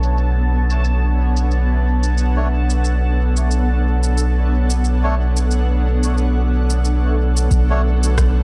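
A deep, round dub sub bass sits up front on a Bm9 chord beneath a blurred granular cloud pad with 12-bit sampler grit, overdriven electronic shaker and rim click, a bubbling, resonant stepped-filter texture in the background, and reedy, breathy melodica stabs with dub echo entering at 2.4 seconds, in this meditative, hazy ambient dub excerpt at 90 BPM with a swung feel in B minor, where a soft overdriven electronic kick arrives only at 7.5 seconds.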